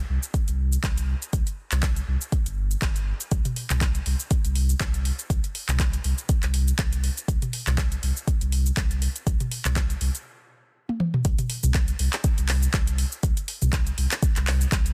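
Spiritual and earthy in mood, this afro house excerpt moves at 121 BPM in 4/4 with a light swing on the sixteenths. A warm, round, sine-like sub bass opens the track at 0.0 seconds, sitting up front with a fast attack, sustained, mellow notes in a low register and a sidechain pumping that makes it breathe around the beat. An electronic kick drum, deep and produced, joins it alongside an afro-pop drum kit of handclaps, metallic hi-hats, shaker and toms, both placed up front in the mix. After a stop beginning at 10.3 seconds and a brief drum fill, the drop arrives at 11.2 seconds and carries the groove to the end of the cut. The sound is dry and close, with a dense, heavily limited modern master.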